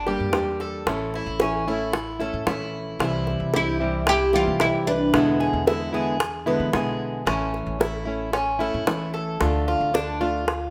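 Latin Cuban son and guajira with a nostalgic, danceable feel, heard in a short excerpt cut from a longer piece. Tight, high-tuned bongos sit close and dry up front, while a woody, thumpy pizzicato upright bass with gut strings anchors the bottom, a dark, fingerpicked nylon-string guitar with fresh strings plays classical-style accompaniment, and a picked Cuban tres with metallic, partly octave-doubled strings spins arpeggios. From 3.6 to 6.4 s a deep, plectrum-plucked fretless oud steps forward with a brief melody, and the room adds a moderate large-studio reverb.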